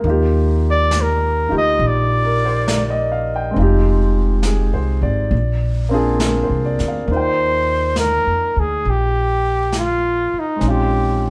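Jazz ballad excerpt at 68 BPM in Eb major with a gentle swing and a romantic, intimate mood, where a clear flugelhorn with light vibrato enters at 0.7 s and solos up front through 7.1 s over an up-front grand piano whose action noise is audible, a woody pizzicato upright bass, and an airy, polished brush kit on snare and hi-hat, all played live together in a large studio with moderate reverb over lush chords such as Ebmaj9 and Bbm11.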